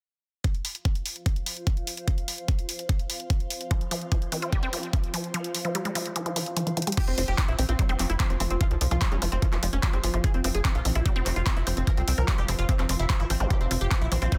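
A dense, heavily limited psychedelic trance excerpt with a hypnotic pull, where a knocking, up-front electronic kick and an overdriven techno kit of crash, handclaps and hi-hat sit under a cloudy, blurred granular pad that pumps in the background. It is joined at 3.7 seconds by a lush, warbling detuned unison pluck through digital delay, at 4.3 seconds by a brief, very quiet formant-sweep wobble bass, and, after the kick drops out and a drum fill lands, by a punchy supersaw stab melody with phaser and tape echo over a tight, saturated sequencer bass from 7.1 seconds, with a faint electronic zap near the close.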